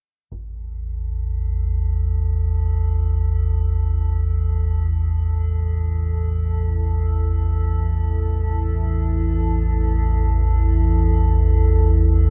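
This dark ambient drone piece, cut from a longer work, unfolds in free time with a cavernous, unsettling mood. A taiko ensemble with heavy sticks sounds only briefly at 0.3 seconds, close and dry but low-pass filtered and set in the background. Then an up-front analog drone rises from 0.5 seconds, nasal and evolving under pulse-width modulation, with subtle chorus and a filter sweep. A metallic, inharmonic FM drone adds an eerie high tone, and from 1.4 seconds a deep, warbling, vintage pad of detuned sawtooth voices holds moody sustained chords. Fade-ins draw the pad, drone and drums into a wet cathedral reverb with a 5.2-second decay, and the whole is captured on cassette tape.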